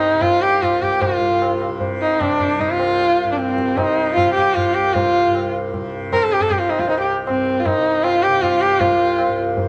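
Bathed in a moderate concert-hall reverb, this brief cut from a longer Hindustani classical piece carries a longing, meditative mood in a five-beat metre that speeds up throughout, with a dark, expressive bowed sarangi up front, gliding with vibrato and portamento over its sympathetic strings, above a softly plucked, buzzing, shimmering tanpura drone and a high-tuned, short-ringing, vintage-sounding tabla that enters at 0.2 seconds.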